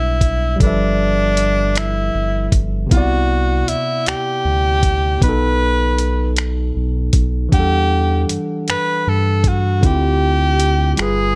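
A slow, straight six-eight groove from a dusty, compressed sampler-style kit of finger snaps, hi-hat and a thumpy kick sits up front, with a deep, round analog bass underneath, in this intimate, sensual R&B excerpt. A barky, bell-like tine electric piano through a combo amp carries lush extended chords that move from G6 and G13 through Cmaj9#11 and B7 to Em11 and Dm11. Over it, a breathy, whispered tenor saxophone sings the melody up front with light vibrato and a slapback echo, all in a digital ambience.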